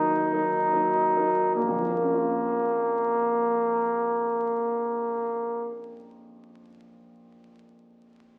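A mellow, vintage-toned trumpet sings a solemn melody up front over clear, smooth grand piano accompaniment, opening on an Eb minor chord over Bb while the tempo slows in the first 1.6 seconds before settling on Bb minor. This melancholic romantic classical fragment moves at a slow 46-53 BPM in a rubato 4/4, with the trumpet falling silent at 5.8 seconds and the piano carrying on alone until 8.4 seconds. A reverberant recital hall and the crackle of a very old 78 rpm record give the performance an aged character.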